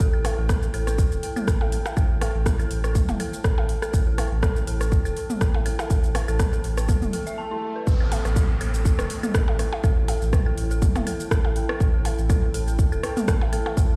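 Minimal techno at 122 BPM with a light 16th-note swing and a clinical, quirky mood, cut from a longer piece: a punchy, up-front electronic kick and metallic house hats, rim click and shaker drive beneath a thick, saturated sine sub bass that pumps to the sidechain, while an eerie, inharmonic FM synth bell with a warbling detune and dub echo and a minimal click kit of claves, blips, rim and toms through digital delay join in, and a moody detuned sawtooth pad and a pulsing tempo-synced triangle texture sit in the background, all ringing in a bare stone room on a big sound system, with a swell and downlifter entering at 7.1 seconds into a short break before the drop lands at 7.9 seconds.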